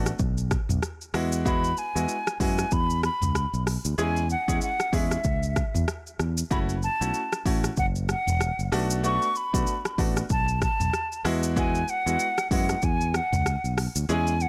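Mellow and smooth, this afrobeats excerpt moves at 95 BPM in 4/4 with a gentle sixteenth-note swing, cut from a longer piece and tuned slightly sharp of standard pitch. A fingered electric bass sits up front with a direct, amped tone in its low register, while a clear grand piano with a worn, short-sustained sound supplies accompaniment in the middle range. The afro-pop drum kit has an electronic, produced character, pairing a deep kick and smooth hi-hats with rim clicks, shaker and toms, all given an overdriven edge and placed up front. At 1.5 seconds a close-miked concert flute enters with the melody, airy and hollow with vibrato, a crisp attack and a digital delay trailing its high notes. The harmony drifts from B7 through Eadd9, C#m over E, F#m7 and Bm7 before returning to Eadd9, and the dry room lends the whole a close, intimate feel.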